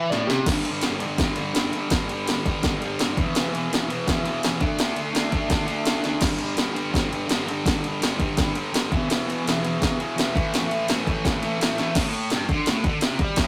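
Garage rock with a menacing, gritty feel at a driving 167 BPM, opening on a brief break where a dark, slightly broken-up slide guitar sounds for half a second alongside a bright, double-tracked fuzz guitar riff and a punchy, tape-warm analog drum machine, which then carry the piece through G5, E5, D5 and A5 chords, with drum fills at 6.0 and 11.8 seconds, to a chordless stretch at 12.0 seconds, all captured as a rough rehearsal-room recording with tube saturation and light reverb.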